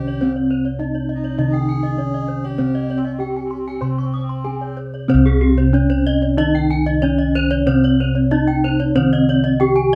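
A bronze metallophone carries the melody of this brilliant, hypnotic gamelan excerpt in C pelog, its dark, smooth tone shimmering from paired tuning, while a reedy, breathy melodica adds a quiet second line that drops out at 4.8 s. Beneath them, a lower metallophone plays a dark, smooth accompaniment, and up-front bossed gongs with padded beaters supply a round, beating bass. Two higher metallophones spin arpeggios, one close-miked and dry, the other struck with a horn mallet and sounding boxy, over a moderate room ambience at 93-104 BPM in 4/4, with a new section arriving at 5.1 s.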